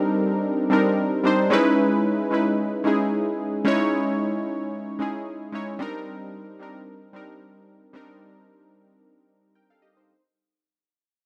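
Warm analog keys play alone through this hypnotic, deep amapiano fragment, their round, detuned sawtooth tone sitting up front with chorus, a filter sweep and fast-attack, decaying notes between G3 and G5 over a swung sixteenth-note feel, moving from Cm7 to C#m7 at 1.5 seconds and back to Cm7 at 5.8 seconds inside a moderate recital-hall reverb.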